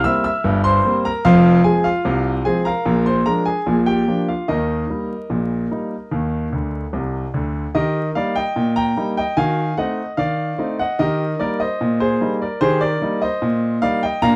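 Dark, crackling vinyl texture and a moderate studio reverb frame this playful, cheerful ragtime excerpt in Eb major at 74 BPM in a straight 2/4, where a clear, natural grand piano sits up front as the sole instrument, ranging from deep F1 bass to bright E6 treble across changes from C7 through Fm and Bb7 to Eb, with a brief fill at 6.5 seconds leading into a second passage that passes through an Ebdim7 before settling back on Eb at 11.0 seconds.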